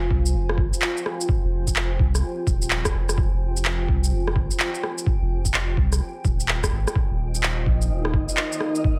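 A swung 16th-note groove at 127 BPM in 4/4 drives this nocturnal, wistful future garage excerpt in F minor, where a muffled, pitched-down thumpy kick and tape-warm shaker, rim click and handclaps sit alongside a deep, round dub sub bass and a cloudy, evolving granular pad that both pump with sidechain, moving from Fm9 to Eb at 7.0 s as an airy, breathy wind-like tuned noise texture drifts in at 7.3 s, all within light reverb.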